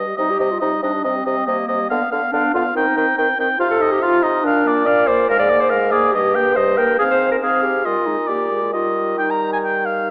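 Quick classical-period wind quintet music in Eb major at 140 BPM in 4/4, lively and graceful, cut from a longer piece: a clear oboe sits up front on the second line with light vibrato and a soft attack, a warm clarinet enters at 0.2 s as accompaniment beside a dark, punchy French horn, and a distant, roomy bassoon with light vibrato carries the bass, while the harmony moves from C minor toward a closing Eb cadence, all heard through a recital hall's moderate reverb and an AM radio sound.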